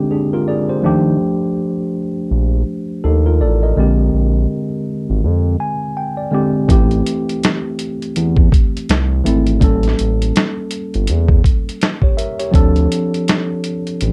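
Lo-fi hip hop at 82 BPM in 4/4, with a swung sixteenth-note feel and a nostalgic, hazy mood, this excerpt is cut from a longer piece. A worn, slightly out-of-tune tine electric piano opens at 0.0 seconds, its tone softened by a low-pass filter and plate reverb as it moves through rich chords like Bb13 and Ebmaj9#11, then Am7, A7b9 and Dm7. A smooth, mellow synth bass enters at 0.8 seconds, its sustained notes gliding between pitches with portamento. After an electric piano fill, a gritty, pitched-down boom bap drum kit arrives at 6.7 seconds, with a thumpy kick, a medium-tuned snare and hi-hat, compressed and tape-colored. The production is dark, with light reverb.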